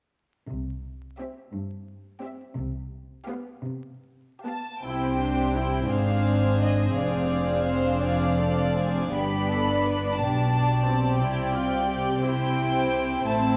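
Cellos, with light vibrato and a soft attack, and double basses open the passage at 0.5 s, bowing sul tasto in an intimate, close low register. At 1.2 s the upper strings enter: a clear, floating violin melody, a second violin line beneath it, and up-front violas filling in the accompaniment. This slow, lyrical romantic movement for string orchestra moves in a rubato 6/8 at 50-60 BPM in C major, drifting through Ab and Dm7b5/F before settling back on C, with a moderate scoring-stage reverb, a dark, warm production and vinyl crackle.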